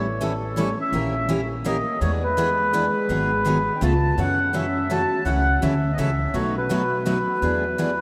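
A reedy, mellow accordion carries the melody up front in this lively, charming 8-second jazz manouche excerpt at 166 BPM in a swung 3/4, joined by a dark, distant French horn with light vibrato on a second line, two bright picked steel-string acoustic guitars (one full-bodied jumbo, the other a concert model in the background) picking the changes from A7 through G#m7 and F#m7 to E7, and a woody, thumpy pizzicato upright bass with gut strings, all washed in the long reverb of a vast, echoing cathedral.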